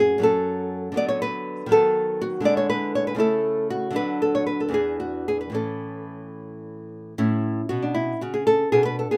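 This classical, baroque-style dance in 6/8 is played on a solo fingerpicked nylon-string guitar, radiant and serene in A major, moving at about 72-82 BPM in dotted quarters with a flexible, rubato feel. The guitar sounds warm, small and up front in a light reverb, ranging from E2 to D5 as the harmony passes from F#m through B7/D# and E9 to settle on A at 5.5 s. A new section begins at 7.2 s before this short fragment of a longer piece breaks off at 9.2 s.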